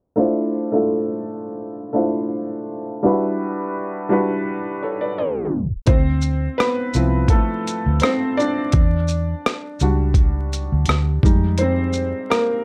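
Melancholic and hazy, this lo-fi hip hop excerpt at 84 BPM in D dorian opens with a soft, intimate felt-muted upright piano colored by cassette tape and a filter sweep, its Dm9 and Em9 chords drifting until a tape stop at 5.2 seconds. At 5.9 seconds the piano takes a solo as a dark, round, foam-muted electric bass and a gritty, pitched-down boom bap sampler kit with a thumpy kick, hi-hat, rim click and shaker enter with a lazy 16th-note swing, all three parts sitting up front. A small room reverb and vinyl crackle lend a dusty closeness as the harmony moves through Em9 to a closing Fm9.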